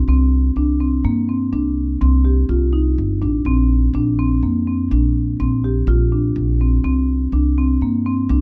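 Dark, lightly reverberant production frames this brief, intricate and bright progressive instrumental fragment in 7/4, where a woody, thumpy pizzicato upright bass sits up front beside smooth marimba arpeggios played with medium mallets, the harmony moving from C5 to Bbadd9 at 3.5 seconds and back to C5 at 6.8 seconds.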